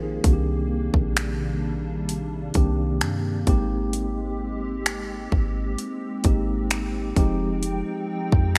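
A mellow tine electric piano, a hollow, flute-like pad with a warbling ensemble chorus, and a deep, boomy 808-style bass open this late-night, longing contemporary R&B excerpt in C minor at 65 BPM. At 0.2 seconds an up-front trap kit joins with finger snaps, metallic hi-hats and a hard-clipped kick. Over a digital ambience, the parts move through Cm7, Abmaj9 and Fm9.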